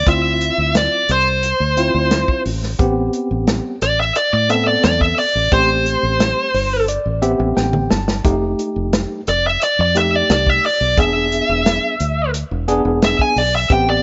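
Brooding and soulful, this straight-eighth soul blues excerpt in A minor at 88 BPM features a dark, smooth, overdriven lead guitar soloing up front over a worn, slightly out-of-tune electric piano with light overdrive that adds a fill at 6.2 seconds, a foam-muted fingered bass, and a distant, roomy soul drum kit with a tight kick that fills at 7.6 seconds, all in a small room with a rolled-off top as the chords move from Dm9 and Am9 to F7 and E7.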